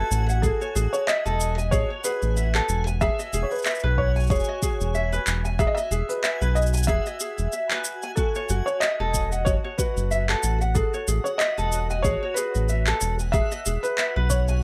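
Delicate and hopeful, this folktronica excerpt moves at 93 BPM in 4/4 with a lightly swung sixteenth feel, where a soft, mellow felt-muted upright piano carries the melody and bright fingerpicked ukulele arpeggios shimmer alongside it, both trailed by tape echo, over a round, dark analog bass that sits up front with tube saturation, while a dreamy, granular backwards swelling texture drifts in the background and tape-toned electronic shaker, handclaps and a deep kick, re-recorded in a large room, keep time as the harmony moves through F#m7, E and Amaj7(no3).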